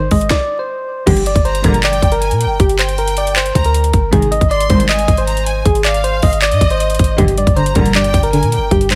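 A haze of vinyl crackle hangs over this dark, melancholic trap cut, taken from a longer hip hop piece at 157 BPM in a half-time 4/4 feel, set in G phrygian and tuned to A4 = 439 Hz. Soft, round electric-piano-like synth keys carry the melody up front, detuned and mellow, with chorus and a low-pass filter, above a deep, boomy 808-style bass with a clean sine tone. The trap kit brings a hard-clipped kick, sharp snare, metallic hats, handclaps and crash with a tape-warm character, sitting forward in the mix. After a brief stop that ends at 1.1 s, a dark symphonic string section adds lush bowed stabs with expressive vibrato, and soon an intense, bright violin section traces a high second line touched by digital delay. A twangy, full-bodied resonator pluck with chorus and filtering frames the clip, sounding at the opening and returning at 7.2 s as the harmony moves between Ab and Gm.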